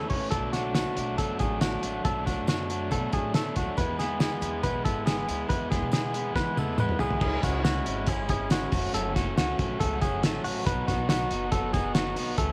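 This youthful, bright stretch of jangly indie pop, cut from a longer piece, opens on a crunchy overdriven guitar picking out the accompaniment up front, a clean, twangy electric guitar picking compressed arpeggios high above it, and an upright bass plucked pizzicato with a woody, thumpy tone. A cloth-damped drum kit joins almost at once, lo-fi and muffled, with a fat snare, a tight kick, dark cymbals and a gritty, saturated edge, sitting forward in the mix. A very quiet, jingly tambourine adds a faint shimmer underneath. The harmony moves from Bm7 to E, and a drum fill from 6.4 seconds carries the song into a new section at 7.2 seconds, where the chords shift through C#m, F#m and B. Light reverb and a small-room ambience give the whole band a close, intimate feel.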